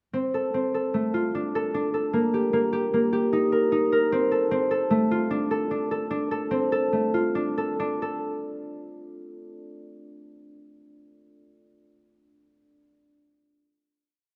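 A bright, thumb-plucked concert harp plays alone from 0.1 to 10.6 seconds, ringing out an ostinato between A3 and Bb4 that moves from Dm7 to Eb and back in D phrygian. This short contemporary instrumental piece has an urgent yet pensive mood, set in 5/4 at 151 BPM with a straight feel that slows down from 4.9 seconds. Close, detailed microphones keep the harp up front, while a moderate recital hall reverb gives it space.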